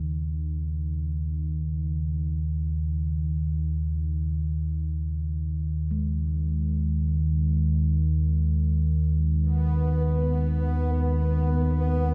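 In free time, this cavernous ambient drone piece rests on a deep, ominous rumbling drone of triangle and sawtooth tones that sits up front, while a very quiet quartz singing bowl played with a felt mallet rings out pure, airy arpeggios with slow beating, and at 9.4 s a bright, resonant, detuned bubbling texture of random filter steps with chorus enters as the harmony moves from Eb7sus4 to B/D#, the whole mix steeped in a huge 7.8-second reverb and a dark production.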